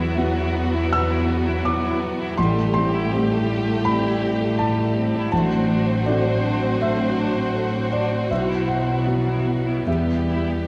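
Sorrowful and bittersweet, this cinematic film-score fragment unfolds with a rubato feel as a violin section carries the melody with vibrato, soft attack and expressive portamento, while a second violin line and a lush viola section sit smoothly in the background. A felt-muted upright piano, intimate and mellow with audible action noise, provides accompaniment alongside distant, roomy French horns holding sustained chords and an intense cello section anchoring the bass. The whole ensemble blooms in a wet concert hall reverb, moving from Esus2 through Am7, D7/A and Bsus4 before settling on Em at 9.9 seconds.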